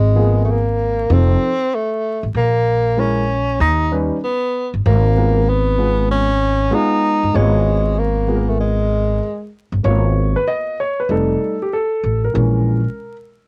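Nocturnal and smoky, this jazz-hop cut from a longer piece swings at 96 BPM in G# dorian, as a breathy, subtoned tenor saxophone sings a mellow melody with vibrato over a woody, growly pizzicato upright bass and a dark, intimate grand piano with audible action noise, until the sax drops out at 9.5 s and the piano takes a solo from 9.8 s, all wrapped in light reverb, the sound of a cassette home recording and vinyl crackle.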